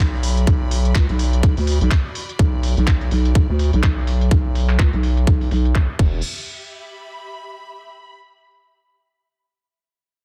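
Bouncy and aggressive, this swung bass house cut from a longer track is driven by a growling, thick FM bass with overdrive, sidechain pumping and a filter sweep, punched along by a tight, up-front electronic kick and a garage kit of crisp hats, handclaps and crash cymbal, its hats, snare and cymbals dulled by low-pass filtering. Behind them, a lush, bowed studio string section with vibrato and portamento pumps with the sidechain as it fades, while the harmony moves from Bm to Em at 6.0 seconds. Once the bass and drums stop around 6.2 seconds, the strings carry on alone until 8.1 seconds in a dense, heavily limited mix with little reverb.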